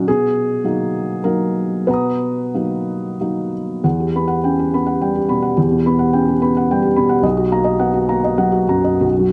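Tender and hopeful, this short excerpt of neoclassical minimalist piano moves in a rubato 3/4 around 88 to 109 BPM in B major, tuned slightly high at A4 = 441 Hz. A felt-muted upright piano plays alone throughout, its soft, thick-felt tone sitting intimate and up front as it spans B1 to D#6 over chords that shift from Bmaj7 to Emadd9 at 3.8 seconds and back to Bmaj7 at 7.2 seconds. Light reverb and a dark production frame the mellow sound.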